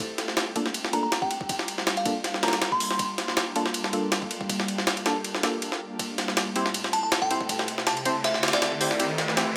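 Drum and bass with a jungle edge at 160 BPM in G dorian, this nostalgic, raw build-up sets gritty, pitched-up sampler drums with a thumpy kick and high-tuned snare up front under deep, mellow chord stabs trailing dub echo, while a glassy FM bell with 12-bit grit plays its melody from 0.9 to 3.1 seconds and again from 6.9 seconds under a filter sweep, as the harmony moves from Gm7 to Am7 at 6.0 seconds, an electronic riser climbs in at 7.1 seconds and a moderate plate reverb surrounds the parts.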